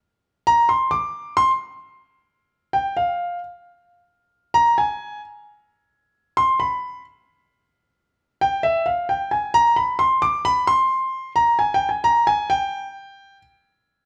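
A concert grand piano enters at 0.5 s and carries this sultry Latin excerpt alone, playing high in the E5 to D6 range at a brisk 132 BPM in a straight 4/4 feel. Its tone is warm with a deep bass and sits up front, set in light reverb and tuned to A4 = 441 Hz. The piano plays until 13.4 s.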